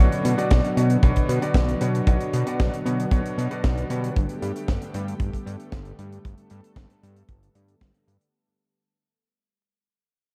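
This nostalgic, melodramatic italo disco excerpt in B minor at 115 BPM opens with a fat, detuned sawtooth bass with a filter sweep, quickly joined by a small-room funk kit with a high-tuned snare and hi-hat and then an up-front, tight acoustic kick. A lush, thick unison pad with chorus sustains chords moving from Bmadd9 to Gadd9 at 4.2 seconds, while a brilliant baby grand piano plays stabs through digital delay until 4.1 seconds. The production is dark with light reverb and vinyl crackle, and the whole clip sits within a fade-out.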